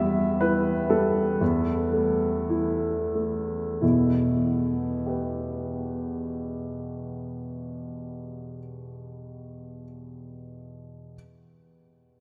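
In a rubato 2/4 that slows through the opening 3.8 seconds at 42 to 63 BPM, this brooding, bittersweet romantic character piece for solo baby grand piano, cut from a longer work in E minor, places the warm, open, up-front instrument with its long sustain between E2 and E5 inside a vast cathedral whose 6.5-second reverb lets each chord hang and echo.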